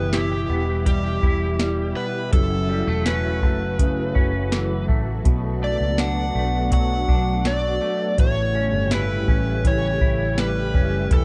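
Melancholic and haunting, this dream pop excerpt moves at a straight 82 BPM in 4/4, with a soft vintage rhythm box of deep kick, crisp snare and metallic hats sitting up front while a round, foam-muted fingered bass anchors the chords Em, F#m7, Bm7 and A7. A bright semi-hollow electric guitar picks clean arpeggios through ensemble chorus and tape echo, over silky, warbling sustained chords from a soft string machine. Above them, an overdriven slide guitar played with fingerpicks carries the melody, bathed in tape echo and plate reverb, all within a dark production and light reverb.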